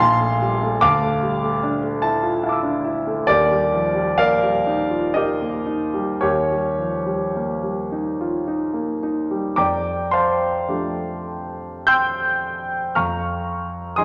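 Bathed in wet recital-hall reverb, this luminous, serene fragment of impressionist classical solo piano in F major drifts in a rubato 3/4 between 48 and 75 BPM, its polished, up-front concert grand ringing with deep bass through richly colored harmonies before moving into a new section at 9.6 seconds.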